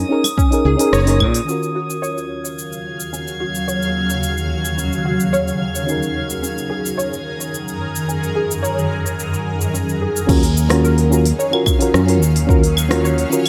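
Warm and wistful, this sunset chillout excerpt in Eb minor drifts at 109 BPM over Gb69 and Ebm9 chords, with a mellow, warbling FM electric piano, an up-front fingered electric bass and deep electronic kick that drop out by 1.4 seconds and return at 10.3 seconds, a deep house kit with smooth hats, cabasa, claves and rim clicks, very quiet low-tuned bongos, soft round pluck arpeggios with a filter sweep from 1.5 to 10.3 seconds, a faint glassy harmonics texture, and a bright, shimmering ethereal pad entering at 2.7 seconds, all in light reverb.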